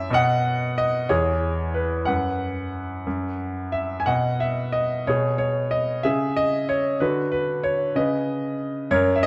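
A clear baby grand piano plays solo, performing a calm, peaceful lyrical classical piece in B major at a gently rubato 62 BPM in 6/8, ranging from E2 up to G#5. Its natural tone and long sustain sit up front within a moderate reverb from a scoring stage, and the production leans dark. The harmony moves through E, F#sus4 and G#m/B before turning to a D chord at 7.0 seconds and settling on Badd9/C#, as this short section from a longer work ends at 9.3 seconds.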